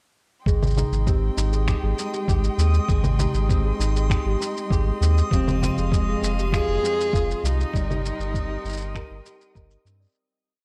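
A dark, expressive cello carries a motif-based melody with vibrato and portamento from 5.3 s in this hopeful, pastoral folktronica piece at 99 BPM in Ab major. Beneath it sit a round sine sub bass in a dotted rhythm, a muffled, thumpy electronic kick, and a clicking found-sound beat of shaker, low conga and finger snaps. A fingerpicked nylon-string guitar rolls through arpeggios with a low-pass filter and tape echo, a chamber string quartet holds soft-attack sustained chords, and a slightly out-of-tune celesta with felt hammers loops a 7-step second line through tape echo that drifts against the bar. From 1.5 s a reversed, granular texture holds a bright high note in the background, and the dark, reverberant production fades out from 6.9 s.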